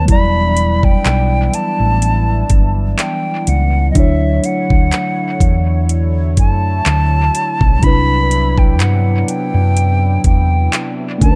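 Moody and longing, this contemporary R&B excerpt, cut from a longer piece, sets an airy, close-miked concert flute melody with vibrato and tape echo over a mellow tine electric piano, also touched with tape echo, a shimmering, chorused pulse-width pad, a round, punchy hollow-body electric bass and an up-front electronic drum kit of knocking kick, metallic hi-hat and handclaps that enters at 0.1 seconds, moving through Em9, Dmaj9 and Cmaj9#11 in an echo-heavy digital ambience.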